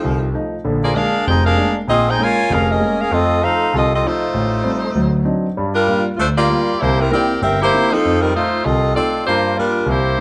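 Swinging and brassy, this up-tempo jazz excerpt at 195 BPM in F mixolydian puts a bright saxophone section with vibrato up front on the melody over an intimate concert grand piano with deep bass and audible action noise, moving through a blues-tinged progression from F7 to Gm7 in a large studio reverb with a dark production.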